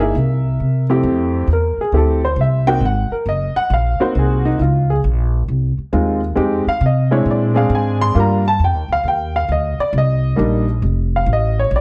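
An upright piano, intimate and slightly detuned with audible action noise, carries the melody in this relaxed, playful jazz passage cut from a longer piece. After a brief opening, the piano takes a solo from 1.0 s that runs to the end at 11.8 s. Beneath it, a pizzicato upright bass with a woody, steel-string tone sits up front and plays throughout. The music swings in 4/4 over changes that move through Fmaj7, Ab7, Dbmaj9 and Fm7 to Bb7 before settling through Ebmaj7 and Cm7 onto F. A moderate spring reverb and studio ambience frame the dark, warm production.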